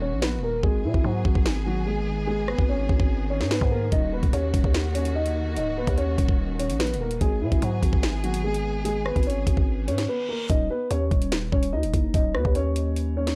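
Drill hip hop at 146 BPM in a half-time feel, this ominous, menacing excerpt sits on a dark, moody harmony that moves between Ebm and Abm. A dark, boxy concert grand piano carries the melody up front, its mellow tone softened by a low-pass filter and repeated through tape echo, with audible action noise adding intimacy. Beneath it, a rich chamber string section holds bowed, vibrato-laden chords until 10.5 seconds, while a growling, buzzy 808-style bass with a fast attack and decaying tail anchors the low end throughout. The electronic drill drum kit enters at 0.2 seconds with a knocking kick, sharp snare, rim clicks and metallic hi-hats, though it drops back for a break over the opening bars. A reverse cymbal rises in just before 10.5 seconds, where the harmony falls away and the closing passage strips down to piano, bass and drums. The whole excerpt carries a dry, gritty hardware-and-cassette character with a layer of digital ambience.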